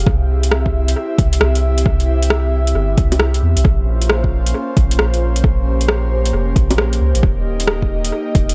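Future garage at 134 BPM with a swung 16th feel, this ghostly, rainy fragment opens on an airy, breathy pad holding detuned chords through C, Bbmadd9 and Eb. The pad, carrying chorus and vintage 12-bit sampler grit, pumps with the sidechain alongside a round, up-front dub sub bass with tube saturation that pumps as well. An overdriven electronic kick arrives at 0.1 seconds, and a deep house kit of bongos, metallic hats and rim clicks with analog delay follows at 0.4 seconds, all set in an echo-heavy mix with light reverb and digital ambience.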